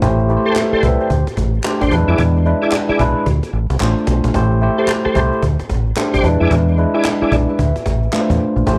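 A home cassette recording in a snug booth gives this short, cut-from-a-longer-piece slice of new jack swing a lo-fi, intimate grain, with a swung, confident and bouncy R&B feel. Up front, a clean tine electric piano colored by phaser and plate reverb carries the chords over a dark, round, punchy fingered dub bass, while a snappy cajon with snares drives the groove and plays a fill at 3.3 seconds. From 0.5 seconds, smooth tonewheel organ stabs swirl through chorus vibrato, fast rotary speaker and tape echo, and crisp, distant group handclaps sit far back as if in a large room.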